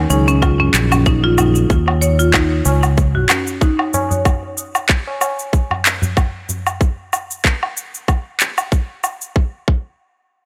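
A lightly swung 94 BPM groove in 4/4 drives this earthy, meditative organic downtempo piece in Eb minor, built on a tight, overdriven electronic kick and up-front electronic shaker, woodblock and handclaps, with a low-tuned, ringing tabla playing until 6.6 seconds. Over a held Ebm7 chord, a fretless electric bass pumps beneath bright, woody hard-mallet marimba arpeggios, while muted, felt-like synth keys sit dark and soft in the background until 1.7 seconds; both the marimba and the keys carry filter sweeps and tape echo. Light reverb and digital ambience surround the sound, and the harmony drops away to a chordless passage at 9.4 seconds.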